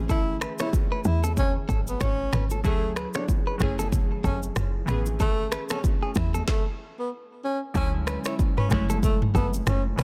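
Glassy, chorused digital keys and a punchy, woody log drum bass open this sunny, romantic afrobeats excerpt at 94 BPM in A major, joined almost at once by a breathy, intimate tenor saxophone melody with vibrato and delay, a bright clean electric guitar riff, an up-front electronic drum kit with a deep kick, crisp hats and a softly clipped snare, and distant congas and bongos in the background, moving through Amaj7, Dmaj9#11 and F#m9 before a stop at 6.5 seconds gives way to a new section at 7.8 seconds in a dense, dry, heavily limited mix.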